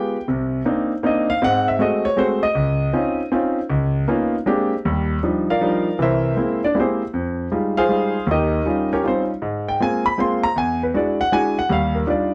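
Relaxed and playful, this jazz waltz for solo concert grand piano is cut from a longer piece and swings its eighth notes with an easy lilt in 3/4. The piano plays alone throughout its 12.3 seconds, spanning from deep bass up to the high treble, and it sits up front with an intimate, natural tone where the soft clatter of the action can be heard. Rich extended harmonies drive the music, moving from Cm9 through Ab7b9 and Dbmaj9 before a Bb13 lands on Ebmaj9 at 4.8 seconds. From there the second passage wanders through C7b13, Fm9 and a colourful E9 before settling back on Ebmaj9. The sound is dry and close, in the manner of a 1970s studio, with only a light touch of reverb around the instrument.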